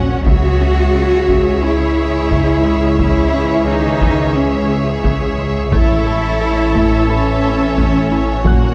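A taiko ensemble struck with heavy sticks drives this vast, tense cinematic cue, a hybrid orchestral and electronic film score at 88 BPM in C# minor, cut from a longer piece and opening on a drum fill at 0.0 seconds before the drums settle in from 0.3 seconds. Beneath them, a swirling, saturated detuned saw bass with phaser doubles a distant double bass section in the low register, while an expressive cello section carries a lush bass line above. Mellow French horns and a clear, vintage-toned trombone section hold sustained chords in the background, joined by a deep, moody ambient pad that evolves slowly under a very quiet veil of chorus. Smooth, bowed violins sing the melody with vibrato over a second violin line and a lush viola accompaniment, as a bright analog pluck ripples through arpeggios and a very quiet concert grand piano adds a high, clear texture. The harmony moves from C# minor to A at 5.7 seconds, all set in a dark production with the ensemble bathed in the reverb of a scoring stage.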